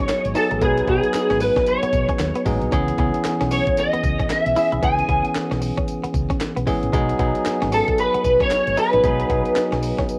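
A bell-like tine electric piano and a slightly broken-up electric guitar open this punchy, confident new jack swing cut from a longer piece, set at 114 BPM in C# minor with a 16th-note swing feel. The dark, picked lead guitar carries the melody up front, coloured by ensemble chorus, plate reverb and cassette tape, while the bright, clean electric piano comps beneath it through the same plate and tape. Tucked in the background, a direct-recorded clean guitar plays a compressed riff with a subtle chorus shimmer. A woody, round fretless bass enters at 0.1 seconds alongside a gritty, sampler-style breakbeat kit of thumpy kick, high-tuned snare, hi-hat, handclaps and tambourine. The harmony moves from G#m7 to C#m7 at 2.7 seconds and back to G#m7 at 6.9 seconds, all within a modest booth ambience that gives the piece a homemade cassette character.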